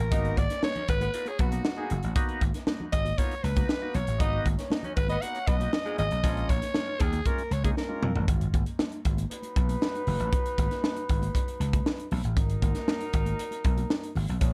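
Driving and sly, this funk excerpt opens with a raspy, gritty alto saxophone solo over amped, punchy slap bass, a crisp fusion drum kit with a high-tuned snare, very quiet close congas, distant mellow horns and a bright, reedy tonewheel organ whose stabs carry key click, slow rotary speaker and tape echo until 8.1 seconds; during a drum fill the saxophone stops at 8.2 seconds, and the horns return at 9.3 seconds to carry the second line over the rhythm section in a dark production with light reverb.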